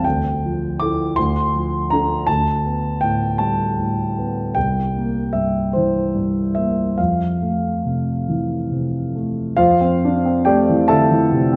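A solo grand piano opens on a D minor added-ninth chord, beginning a dreamy, serene fragment of impressionist classical music in F major that drifts in 6/8 at roughly 45-55 BPM by the dotted quarter, with free rubato. The harmony moves through Dm7, Gadd9 over D and C7, settles on Fmaj7 at 7.0 seconds, and shifts to Fmaj9 at 9.6 seconds as a new passage begins, the piano spanning C2 to D6. Its tone is present, polished and up front, set in a moderate recital-hall reverb within a dark, warm production.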